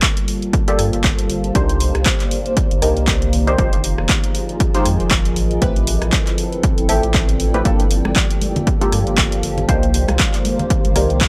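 A dark, detuned pad and a hazy granular cloud open this late-night deep house fragment, cut from a longer piece, alongside an overdriven analog kick and a punchy drum machine of handclaps, hi-hat and rim click, both drums re-recorded in a large room. The tempo sits at 118 BPM in 4/4 with a swung sixteenth feel, and the pads breathe with sidechain pumping while the front pad carries chorus and its own reverb. Almost at once a muted, sawtooth dub chord stab arrives with a filter pluck, phaser, lush chorus and tape echo, and a round sine sub bass settles underneath. The harmony moves through minor ninth chords, Gm9, Cm9, Fm9 and Am9, before returning to Gm9 and Cm9. Close, hard-handed congas slip into the background from 8.1 to 10.9 seconds. The overall sound is dry and gritty, with a hardware character that suits the moody atmosphere.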